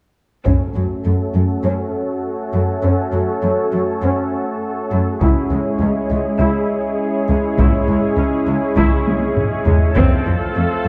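A cut from a longer hybrid orchestral and electronic film cue opens at 0.5 s with lush bowed violas and up-front cellos holding the low bass, joined by a brief entry from a distant, large-room taiko ensemble played with hard sticks, while a swirling, detuned sawtooth pad with a slow attack, phaser and chorus rises in just after. The taikos return at 5.2 s as the harmony moves, and a filter sweep runs through the whole passage as it builds toward a drum fill. The futuristic, relentless mood sits in a dark production with a scoring-stage reverb.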